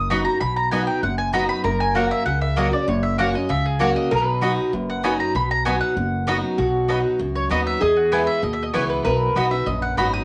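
A brisk, straight 4/4 pulse at 194 BPM drives this rustic, lively bluegrass excerpt in B major, cut from a longer piece. An up-front mandolin carries the melody, its picked double strings sounding woody and warm, and it takes a solo from the start until 6.6 seconds, when the music moves into a new section. Beneath it, a bright, up-front dreadnought guitar picks the accompaniment while a pizzicato upright bass with steel strings gives a warm, woody low end, and a second mandolin adds picked stabs throughout. From 1.6 seconds a lap resonator guitar, played with fingerpicks and a slide, joins with a metallic, nasal second line. The chords move from B to F# and back, touching E before resolving to B. Most of the parts carry a cassette tape coloring, and the whole performance sits in a lively, reverberant room with a homemade feel.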